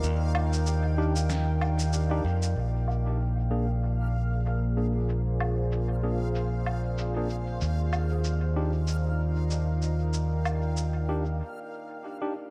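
A swung 95 BPM groove in 4/4 anchors this hazy, peaceful ambient dub, cut from a longer piece in Bb mixolydian. Compressed, pitched-down sampler-style drums made of electronic shaker, woodblock and a muffled, medium-tuned snare carry overdrive, small room ambience and dub echo, and a filter sweep runs over them from 2.6 seconds. Up front, an overdriven fingered electric bass sounds bright and punchy, while a deep, moody pad of detuned sawtooth and sine with a sub octave holds mellow sustained chords through chorus and reverb. A worn, slightly out-of-tune tine electric piano enters at 1.0 seconds with lightly overdriven stabs through a combo amp, softened by a low-pass filter and dub echo. Far in the background, a reversed granular texture swells dreamily on a single high note. The harmony moves from Ebmaj7 to Bb7 and back, ending in a short break at 11.4 seconds.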